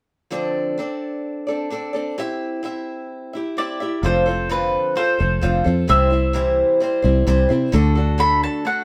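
Recorded live in one room with light reverb, this short clip of folk rock and heartland rock moves at 130 BPM in a straight 4/4 with an open-road, warm mood. An old ladder-braced acoustic guitar, woody and boxy on old strings, picks the accompaniment up front from 0.3 seconds, and a bright, double-strung mandolin carries the melody from 3.6 seconds. A round, dark fingered electric bass, foam-muted and amped, joins up front at 4.0 seconds as the chords move from F6 to C and on to D.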